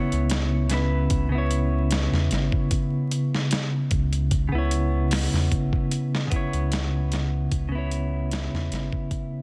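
A dark, clean electric guitar opens this smoky, cinematic trip hop excerpt at 75 BPM in C# minor, holding a C#m7 chord up front with harmonic tremolo and tape echo. A round, mellow dub sub bass and a gritty, overdriven sampler-style drum kit with a thumpy kick, medium-tuned snare and hi-hat enter almost at once, the drums compressed and up front in light reverb with a gentle 16th-note swing. Vinyl crackle colors the dense, heavily limited master, and the whole passage fades out from 5.4 to 9.4 seconds.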